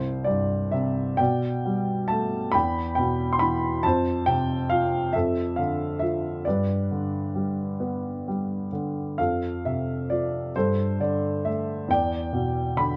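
Set in a slow 6/8 at 45 beats per minute counted in dotted quarters, the pulse stretches and relaxes freely in rubato, giving the beats an uneven, breathing quality. This is a calm, tender classical piece for solo piano, heard here as a short 13-second fragment cut from a longer work. A dark upright piano carries everything on its own from start to finish, ranging from C2 up to C6, and its woody, vintage character sits up front in a light reverb. The harmony opens on C and moves through Gadd9/B, Em, F5 and Dm/F to a G at 6.5 seconds. It then passes through F and Gsus2 before settling on Em7 at 11.9 seconds. The lyrical, unhurried playing keeps the mood calm and tender throughout.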